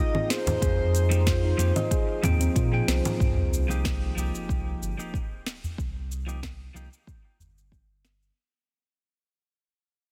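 A mystical organic downtempo passage in C minor at 93 BPM opens on a breathy, warbling flute-like synth lead, a very quiet airy pad and a round, ringing steel tongue drum with tape echo and shimmer reverb, all over an Fm7 chord, and the three have dropped out by 3.2 seconds. Produced afro-pop drums with a sharp snare, metallic hats, cabasa and congas join a deep electronic kick, a small close udu, a round sine sub bass with sidechain pumping, and a twangy, compressed clean electric guitar carrying 12-bit sampler grit. At 3.2 seconds the harmony moves to Cm7 as a very quiet sub drop lands and the rest of the passage fades out, all in a dense, heavily limited mix with light reverb.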